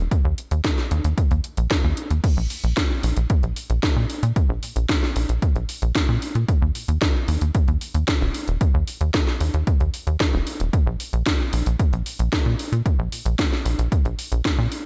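Italo disco with a danceable, playful mood, this short excerpt cut from a longer piece runs on a tight, driving sequencer bass whose sawtooth and square-wave tones carry a plucky filter, a moving notch and a touch of tube saturation, sitting up front in the low register. An analog electronic kick with a tape-warm punch pairs with a layered house drum kit of cracking snare, bright hats and crash cymbal, the kit treated with overdrive, studio reverb and gated reverb. The overall sound stays dry and close.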